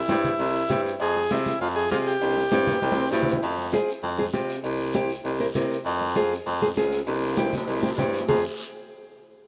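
A buzzy, vintage combo organ carries the melody up front from the very start, over a bright baritone saxophone playing the bass line with vibrato and scooped notes, close-miked and forward in the mix. This is a driving, fiery cumbia in straight four, cut from a longer piece, with a fingerpicked nylon-string guitar adding small, warm accompaniment alongside. The percussion bed layers high-tuned, damped congas with a saturated, compressed snap, ringing metal-shelled cowbell and timbales set distant in a large room, and a raspy, band-limited guiro far beneath. A punchy trombone with its own vibrato slips in behind at 2.5 s as a second line, just as a drum fill leads out of the opening section and the organ drops away at 3.1 s. The harmony swings between C and F minor, touching C7, and a moderate plate reverb gives the whole band a glossy tail.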